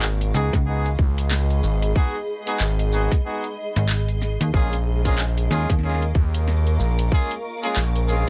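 Light reverb gives this short glitch hop cut a compact, slightly roomy sound, with the kick, the gritty synth bass and the slap-like FM bass sitting up front. At 93 BPM in 4/4, with a swung sixteenth feel in G# dorian, the groove is funky and playful, moving from G#m7 to A#m7 at 4.5 seconds. The drum parts are layered and produced: a tight electronic kick enters at 0.5 seconds, and a drum and bass kit adds a cracking snare, metallic hi-hats, handclaps and shaker. Two basses share the low end: a saturated, aggressive sawtooth synth with a resonant filter pluck and oscillator sync, and a snappy digital FM bass with a metallic attack that stops at 6.1 seconds. A clear horn section with vibrato and octave doubling plays tight pop-style stabs, pumping against the sidechain and trailed by tape echo. Above them, a granular cloud pad drifts in slow, blurred and bright, its detuned unison voices evolving under their own reverb and sidechain pumping.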